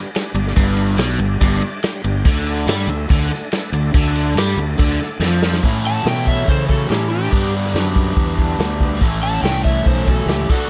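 An overdriven tonewheel organ opens this raunchy, swaggering excerpt of blues rock and southern rock at 142 BPM in A mixolydian. Its thick, gritty sustained chords turn through a slow rotary speaker with chorus vibrato in the background. Almost at once a vintage acoustic drum kit with dark cymbals, a medium-tuned snare and a punchy kick joins up front, along with a growly fuzz bass and a biting, double-tracked guitar riff set in spring reverb. The organ adds a fill early on, and a drum fill leads into the second section, where the harmony moves between A and G. At 5.9 seconds an overdriven slide guitar takes the melody, while a very quiet, dark, distorted lead guitar plays a second line beneath it. The sound is dry and close, in the manner of a 1970s studio recording.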